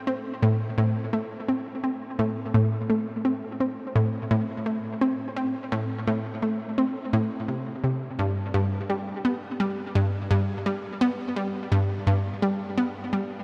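An analog pluck carries this ambient excerpt entirely on its own, ranging from G2 to C4 in A minor at a steady, straight 85 BPM in 4/4. Its tone is round and bright, built from detuned sawtooth and pulse waves with a noise layer, and each note has a fast attack and short decay shaped by a filter pluck. Chorus and tape echo thicken and repeat the notes, and the pluck sits up front in the mix. The whole recording is soaked in a huge, dreamy reverb with a 7.3-second tail, so each note lingers long after it sounds. The mood is hypnotic and mysterious throughout the 13.4 seconds of this fragment cut from a longer piece.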